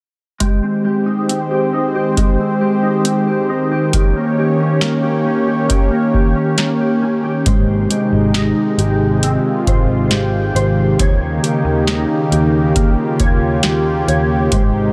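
A booming analog drum machine sits up front in this ethereal, dreamy dream pop piece, its deep kick, tonal snare and metallic hi-hats sounding dry and electronic in a straight 4/4. Beside it, a warm analog pad holds sustained chords with a smooth, detuned sawtooth tone, a slow attack and a chorus shimmer. A mellow electric guitar plays clean, fingered arpeggios with a dark, compressed character, colored by ensemble chorus and digital delay. At 7.5 s the second section begins and a vintage muted picked electric bass joins, its foam-muted, amped sound round and punchy. The harmony alternates between Abmaj7 and Eb7, and a huge ambient reverb with a 7.9-second decay wraps the mix in a dreamy haze. The passage is cut from a longer piece, with the drums stopping at 14.7 s.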